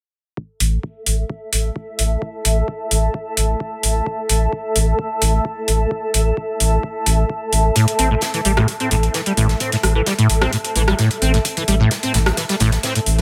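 A straight 130 BPM pulse drives this trippy acid house passage, cut from a longer piece, as a deep, tape-warm analog kick and an up-front electro drum machine with metallic hats and rim clicks carry the groove. A round, sidechain-pumped square-and-sine bass with a filter sweep sits beneath a blurred, slowly evolving granular pad bathed in its own reverb. At 7.8 seconds a squelchy, resonant sawtooth acid riff arrives with tube grit, chorus and delay, alongside an airy acoustic kit's snare and hats tucked into the background of a small, lightly reverberant room.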